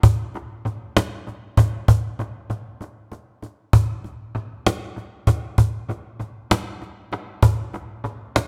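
A woody cajon opens this smoky, mournful blues fragment in a slow, straight 12/8 pulse, sitting close and up front with soft hands and faint snares behind its acoustic tone. An analog delay trails the cajon through a moderate echo chamber reverb, giving the mix a heavy, echoing haze. A brief break from 2.8 to 3.7 seconds interrupts the groove before the cajon carries on to the cut at 8.5 seconds.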